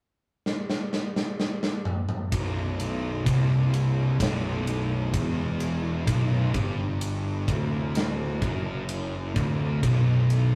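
Heavy and brooding, this stoner and doom metal passage opens with a big rock drum kit alone, rolling through a fill from 0.4 seconds, with bright cymbals and a punchy kick sitting up front. At 2.3 seconds two thick fuzz guitars crash in on a dark, distorted B minor riff, one up front and one in the background, joined by a growly, overdriven electric bass. The rough rehearsal-room sound carries a moderate stone-room reverb and warm saturation.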